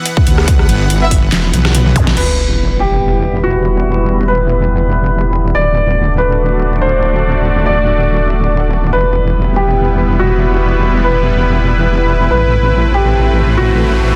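A lush, detuned supersaw pad opens this heavy, menacing wobble dubstep excerpt in E minor at 142 BPM with a swung half-time feel, pumping under sidechain and a low-pass filter, as a saturated sawtooth wobble bass with chorus, a punchy electronic kick and an overdriven, up-front kit of deep snare, metallic hats, claps, rim clicks, toms and crash drive the drop, with a brief, warm brass stab touched by tape echo. After a drum fill, the kit and kick stop, and from 2.2 seconds a dark, mellow baby grand piano with tape echo carries the melody over the wobble bass. An impact and background zaps and sub drop follow as a filter sweep runs on the pad through chords of Em, D and Amadd9, before a riser arrives at 13.1 seconds in a dense, heavily limited mix with light reverb.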